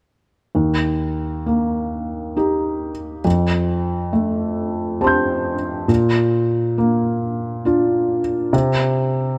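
Peaceful and quietly hopeful, this short neoclassical minimalist piano piece moves in an unhurried triple metre with a loose, rubato feel. A felt-muted upright piano plays alone from 0.5 s to 9.4 s, ranging from a low Eb2 up to G6. Its tone is soft and mellow, with a boxy, intimate character and the audible noise of the action, and the instrument sits up front in the sound. The harmony drifts from Eb to Fadd9 and settles on Bb before falling away to an unaccompanied close. A moderate plate reverb lends the piano a gentle halo, and the passage is clearly cut from a longer work.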